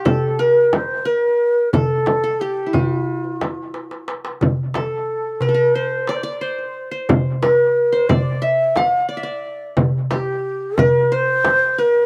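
This Arabic maqam ensemble piece moves at a straight, hypnotic 90 BPM in 4/4, tuned to A4 = 439 Hz, with a melancholic cast throughout. A breathy, mellow reed-cane ney carries the melody up front in a straight tone, while a bright-edged qanun, played with fingerpicks on its triple strings, traces a quieter second line beneath it. A clay-shell darbuka with a vintage, band-limited sound and hard hands joins a close, soft-handed frame drum for the percussion, with a drum fill from 3.7 to 4.4 seconds, all heard dry in an open-air setting in this short section cut from a longer piece.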